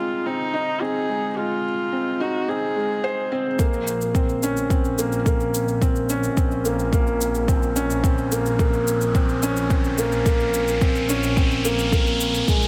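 A hypnotic, intimate piano-and-strings electronica piece in Bb minor at 108 BPM opens on a mellow, felt-muted upright piano riff with audible action noise, beneath a close, nasal sul tasto viola melody; both carry delay. At 3.6 seconds, after the viola has fallen away, the harmony moves from Fm7 to Bbmadd9 and a build-up begins. It brings in a deep, up-front electronic kick and a high-pass-filtered shaker, both with studio reverb, along with a bright, lush bowed double bass section with sidechain pumping. An electronic riser joins at 6.5 seconds and carries the build to the end of this cut from a longer piece.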